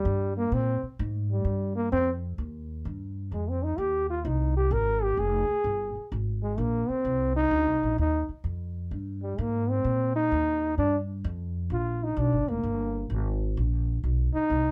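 A swung eighth-note feel at 129 BPM in 4/4 drives this cool, swinging jazz excerpt in C minor, cut from a longer piece and running just under 15 seconds. A clear trombone with light vibrato and a smooth top takes the lead as soloist throughout, sitting up front and moving between G3 and Bb4. Beneath it, a woody, pizzicato upright bass with steel strings holds down the low end from F1 to Bb2, also placed close and present. The harmony moves from a rootless C minor through Fm7 and Cm7 before landing on a tense G7#9 at 10.8 seconds. Light reverb and a dark, warm production give the duo its cool character.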